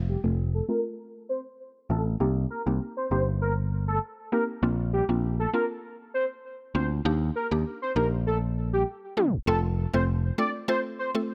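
A velvety, detuned synth lead with chorus, vibrato and delay carries the melody of this tough, bouncy dancehall excerpt over a direct, amped picked electric bass and a woody, mallet-like synth pluck with a phaser, all in a dry, close sound, as a filter sweep runs through the opening over F, Cm7, Bbadd9 and Ebmaj7 until a tape stop at 9.2 s gives way to a brief closing passage back on F.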